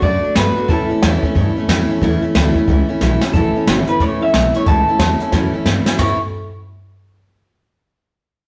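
A swung 4/4 groove at 181 BPM drives this retro, rollicking rockabilly fragment in A mixolydian, cut from a longer piece. A brushed drum kit sits up front with an airy, polished sound, a high-tuned snare and a boomy kick, and it plays fills from 3.0 to 3.3 and again from 5.3 to 6.0 seconds. The woody, thumpy pizzicato upright bass holds the low end on gut strings. A full-bodied dreadnought acoustic guitar, also up front, is picked as accompaniment over a D chord that moves to A. On top, a twangy, slightly broken-up electric guitar through a small old amp carries the lo-fi melody with a warbly pitch drift, and the whole rough rehearsal-room take has warm saturation and a moderate stone-room reverb.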